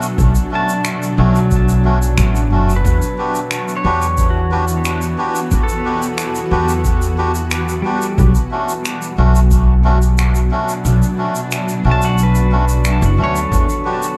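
A woody, up-front pizzicato upright bass anchors this spacious, deep ambient dub excerpt at 90 BPM in E dorian, moving between Bm7 and Em7 over a tape-warm analog electronic kick that drops out from 10.8 to 13.5 seconds, while a blurred, evolving granular cloud pad with built-in reverb and 12-bit sampler grit sustains chords, a clean, fingerpicked pedal steel guitar plays slide arpeggios with volume swells through dub echo, a reedy, breathy melodica adds echoed stabs, and a small-room shaker and finger snaps with brushes tick beneath, all set in light studio reverb with lossy compression artefacts.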